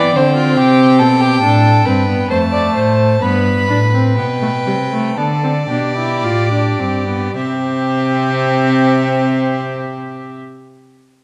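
Classical baroque-style fugue for string quartet, a joyful, lively excerpt from a longer piece in a straight 4/4 that slows down through its first 7.4 seconds before a new section begins. All four bowed players share a reedy, gut-string period tone: a rich first violin with light vibrato carries the melody high above a dark, distant second violin. Beneath them sit a nasal, close viola with an airy bow and an up-front cello laying down the bass, all bathed in a wet recital hall reverb.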